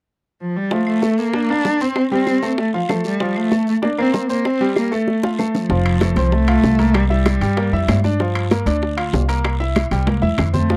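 A brisk, straight 4/4 salsa groove at 192 BPM drives this festive, danceable fragment in F major. Round, low-tuned bongos played with soft hands and a raspy guiro set the pulse from 0.7 s, with very quiet claves joining at 0.9 s. A single bowed cello carries the melody up front, expressive with vibrato and portamento, while a brilliant, polished grand piano with short sustain supplies the accompaniment over chords moving from F and Bbadd9 through C9, Gm7 and C7. At 5.7 s the ensemble grows as a dark, growly pizzicato upright bass arrives up front, joined by thin-skinned congas in the background and ringing metal-shell timbales. Drum fills mark the close of each section, and the cello stops at 8.0 s before a brief final phrase. The close, dry 1970s-style studio sound in a small booth keeps the bass thumpy and the congas bright.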